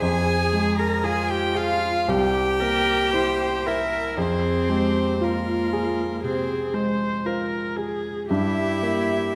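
A pure, floating violin carries the melody up front in this slow, melancholic romantic movement for piano quartet, its soft-attacked sul tasto bowing giving the tune a rich, elegiac glow. Beneath it, a cello sings a second line with light vibrato and an airy bow, while a viola of similar warm, intimate character adds close, gentle accompaniment in the middle of the texture. A dark, mellow baby grand piano supports the strings from its low register upward, sitting up front with its action noise audible. In F minor at 58 BPM in 4/4, the playing breathes with rubato as the harmony moves from Fm to C7, back to Fm, and on to a rootless C7/G near 8.3 seconds. All four instruments play throughout this 9.4-second passage cut from a longer piece, set in the reverb of a recital hall.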